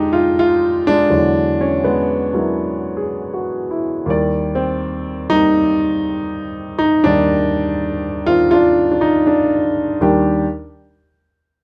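A warm, natural grand piano sits up front in this playful, swinging solo jazz excerpt at 81 BPM in 4/4, moving from Fm11 through E13 to Ebmaj7 across a range from Eb2 to D5 with light reverb before it stops at 10.5 seconds.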